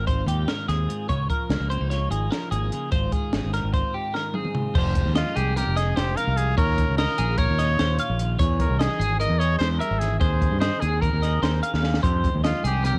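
An intricate, bright math rock and midwest emo piece in 9/8, cut from a longer work, opens with a clean, twangy electric guitar set in the background and a twelve-string electric guitar picking compressed arpeggios high above it, at a brisk 296 BPM counted in eighths. Underneath, a growling fingered electric bass sits up front with overdriven, punchy grit, while a compact cocktail drum kit plays crash, hi-hat, kick, snare and toms, its dark, smooth small-room tone marked by a high-tuned snare and a punchy kick, with cassette tape colouring the drums. In Ab major, the harmony moves through lush added-note chords such as Ab69, Db69 and Fm9, shifting to Dbmadd9 and closing on Fm11. A break arrives at 3.8 seconds with a drum fill leading into a new section, and at 5.2 seconds a bright, present trumpet takes the solo melody, its pop-style vibrato carrying a cassette tinge. The whole has the intimate feel of a home recording on cassette, with audible studio ambience around the players.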